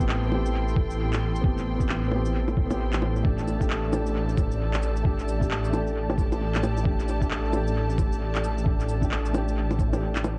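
Wistful and melancholic, this future garage excerpt has a swung 16th-note feel. A soft, muted upright piano with audible action noise trails dub echo over a bowed, sul tasto string section holding sustained chords as the harmony moves from Am7 to Dsus4/A at 3.2 seconds. A saturated, detuned saw bass sits up front with a menacing filter swell, and the bass, piano and strings all pump with sidechain compression alongside a muffled, thumpy, pitched-down electronic kick, while tape-tinged shaker, handclaps, bongos and cabasa run through analog delay and a very quiet glassy harmonics texture drifts through the mix, all within an echo-heavy mix with light reverb and a cassette tape character.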